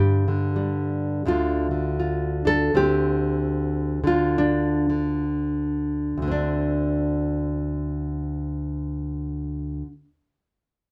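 Swung eighth notes in 4/4 drift between 62 and 86 BPM, the pulse slowing through the first 6.2 seconds of this wistful, melancholic folk fragment cut from a longer piece. A solo fingerpicked nylon-string guitar, up front, full-bodied and warm with fresh strings, spans D2 to A4 over G5, Dm and Csus2/D chords, its deep classical tone set in light reverb.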